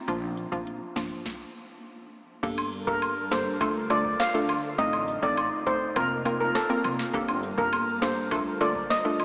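A bouncy, tough dancehall excerpt opens with a hollow, detuned square-wave pluck with sidechain pumping, a woody pizzicato upright bass and a booming analog drum machine with a deep kick, crisp snare, metallic hats, rim clicks and crash. After a brief stop from 1.3 to 2.4 seconds, the groove returns and fills out. Woodblock and cabasa enter at 2.6 seconds, a compressed, saturated layer of maracas and group handclaps. A glassy, ethereal FM pad follows with slow-attack sustained chords under an ensemble chorus and its own pumping, while a shimmering steel pan lead, struck with hard rubber sticks, sits up front from 2.9 seconds with tape echo. Harmony moves through Gmadd9, Dm, Adim and Fsus4, and a cathedral-sized reverb soaks the whole mix in a dreamy wash that still sounds like it comes from a small speaker.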